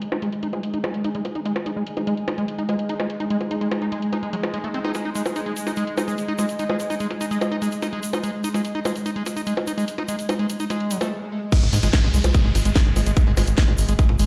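Heard through a big sound system in a bare room, with a large studio reverb and a moderate digital ambience, this psychedelic trance cut moves in a straight four with an intense, driving mood. A bright, pulsing gated texture holds sustained chords under chorus and its own reverb, and a warbling, nostalgic pad sits dark and lo-fi in the background, both pumping against the sidechain. Up front, an overdriven acid bass riff squelches with gritty, saturated grit through cassette-tape colour and digital delay while a filter sweeps across it. A filtered garage drum kit of bongos, a cracking snare, warm hats and crash cymbal runs throughout, joined at 4.9 seconds by a grainy acoustic tube shaker, and a juicy, phased blip pluck flickers briefly in the background. An electronic swell and downlifter sweep in from 10.9 seconds into a short break, and at 11.5 seconds the drop lands with a tight, layered electronic kick and a punchy sawtooth sequencer bass, both up front.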